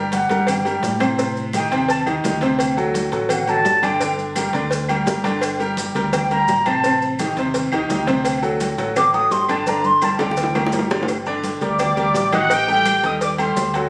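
A driving, fiery salsa groove in straight 4/4 at 170 BPM, built on tight high bongos and cowbell, ringing dry timbales and agogo bells, damped hard-hand congas, grainy maracas and distant woody claves, with a round, dark fingered electric bass and a brilliant, up-front upright piano carrying the G harmonic minor changes from Gm through Am7b5 and D7. A pure, straight-toned concert flute with a crisp attack and slapback echo leads until 10.7 s, with a drum fill from 9.7 s, before a tight, vintage-sounding trumpet section with vibrato takes over at 11.6 s. The excerpt, cut from a longer piece, has moderate studio reverb and a compressed, phone-in-the-room sound.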